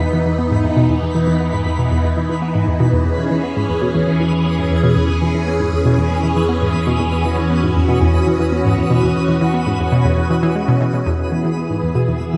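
Luminous and expansive, this ambient, sequencer-driven space music is a short cut from a longer piece, set in a steady 4/4 with a straight feel. Up front, a bright, vintage string machine holds sustained chords, its soft attack and long release given a swirling character by ensemble chorus and phaser. Beneath it, a round analog pluck built from sawtooth, pulse and triangle waves with a noise layer and wave folding plays a riff, its fast attack and decaying tail carried by chorus and delay, while a filter sweep runs on the synth arpeggio sound through the first 11.2 seconds. A mellow, warbling analog drone anchors the bass on E2, slowly evolving through pulse-width modulation, chorus and tube saturation before it stops at 11.2 seconds as the brief closing section begins. High above, a faint, twinkling granular texture adds sparkling FM shimmer an octave up, bathed in its own reverb, and a moderate plate reverb leaves the whole mix dreamy and soaked.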